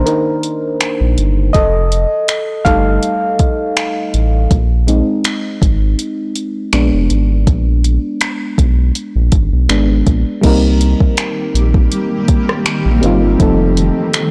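Contemporary R&B at 81 BPM with a lightly swung sixteenth feel, tender and dreamy, cut from a longer piece and moving through Cm7, F7 and Bb7 colours. A mellow, up-front FM electric piano carries the lead from the start until 10.4 seconds over a deep, round analog bass and a soft electronic R&B kit of kick, hats, finger snaps, rim click and crash, whose snare carries soft-clipped overdrive. At 11.3 seconds a cloudy, slowly blooming granular pad with its own reverb adds bright, blurred sustained chords, while the whole recording sits in a blown-out, overdriven digital ambience.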